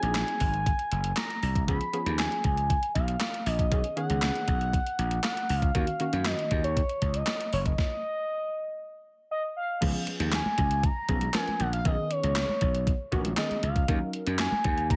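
A crisp 8-bit drum machine drives this slick, funky early-eighties boogie funk at 118 BPM in a straight 4/4, its thumpy kick, medium-tuned snare, handclaps, hi-hat and crash overdriven and treated with gated reverb, while a growly, overdriven slap bass punches up front beneath chords moving through Ab7, Db7, B69 and Ebm7. A smooth, dark synth lead with vibrato, chorus and slapback echo carries the melody, and a detuned, filter-plucked polysynth with chorus comps alongside until 6.6 s, with the harmony dropping out for a stop at 7.8 s. At 9.8 s the comp returns and very quiet, damped, high-tuned congas join for the second section of this excerpt.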